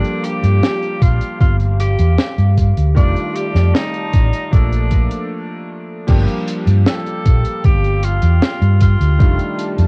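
A bright, punchy alto saxophone opens this woozy, hazy vaporwave fragment with light vibrato and vintage sampler grit, tape echo and cassette wear, over a clear electric grand piano with a clangy low end and analog chorus, a warbling, nostalgic pad drifting in the background, and a tight funk kit with a high-tuned snare, hi-hat and crash. A dark, round hollow-body electric bass with tube saturation joins up front at 0.4 seconds, and a thumpy, sampler-style electronic kick with a large-room tail follows at 1.0 seconds. The Gm7, F13 and Bbmaj7 progression settles into a brief break at 5.3 seconds before a new section, and the whole piece sits in a small-room, home cassette sound.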